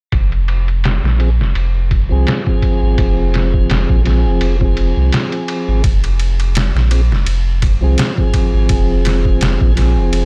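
A swung 84 BPM groove in 4/4 from a compressed, pitched-down sampler-style kit, with thumpy kick, medium-tuned snare and ride dulled by low-pass filtering, drives this hypnotic, smoky trip hop passage in F minor, cut from a longer piece, where a round, deep sine sub bass sits up front beside the drums and a dark, mellow tonewheel organ enters at 1.2 s with slow rotary speaker, vibrato, key click, harmonic tremolo, vintage 12-bit sampler texture and tape echo, set in digital ambience on a dry, gritty hardware recording.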